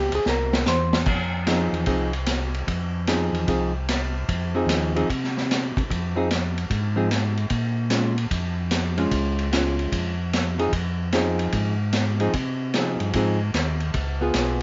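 Smoky and bluesy, this soul jazz organ trio excerpt swings along at 149 BPM in F minor, cut from a longer piece. The hollow-body jazz guitar opens with a brief solo over a C7 chord while the drums play a fill, and by 1.1 seconds the band settles into a groove that moves from Fm7 to Bbm7 and back, closing on Db7. The guitar sits up front with a dark, clean, picked electric tone, then takes an accompanying role. The mellow tonewheel organ carries the bass line, its round, lightly overdriven sound colored by chorus vibrato and a slow rotary speaker. The vintage acoustic kit has a punchy kick, a high-tuned snare and dark cymbals, with a gritty, saturated character that stays close in a studio room. Light reverb and a rolled-off top end give the whole recording a dusky, intimate feel.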